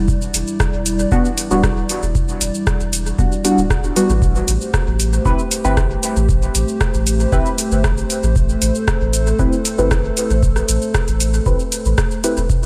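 Dub techno at 116 BPM with a hypnotic, deep mood, this excerpt from a longer piece sets a moody, detuned analog pad with chorus and sidechain pumping and a round, soft sub bass under a deep electronic kick and a booming analog drum machine, both re-recorded in a small room, whose metallic hi-hat, rim click and shaker trail dub echo, while from 1.1 s a mellow, filter-swept chord stab coloured by chorus, phaser, cassette tape, sidechain pumping and dub echo moves from Em7 to Am7 at 4.2 s, within light reverb and digital ambience.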